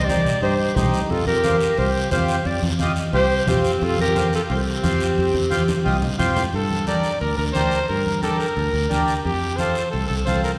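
A clarinet with vibrato carries the melody over a gritty, growling trumpet second line and a round, foam-muted fingered electric bass in this passionate, danceable cumbia excerpt at 177 BPM in straight 4/4. A reedy, airy accordion fills out the accompaniment, while thick-skinned congas played with soft hands and a raspy guiro drive the percussion, both carrying a small-room acoustic character. The harmony moves from C minor to Fsus2 and later through G minor to Fadd9. The clarinet drops out at 6.2 s, and from 6.5 s the punchy, bright trumpet takes over with a solo in pop style. The ensemble sits in a lush hall-like reverb that gives the mix a spacious, resonant glow.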